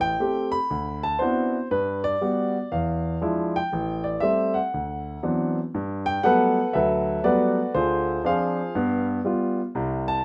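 A swinging 4/4 pulse with a lilting eighth-note feel drives this short jazz excerpt, cut from a longer piece. A lone concert grand piano carries everything from 0.0 to 10.2 seconds, ranging from deep bass notes up into the upper register. Its tone is warm and natural, with a rich low end, and it sits up front in a light reverb. The harmony moves through sophisticated extended chords, cycling Am7, D13, Gmaj7 and E7b9 before settling on a lush Gmaj9 near 5.7 seconds, then turning through Dm7b5 and G7. The mood is polished and urbane, and the chords fall away at the very end.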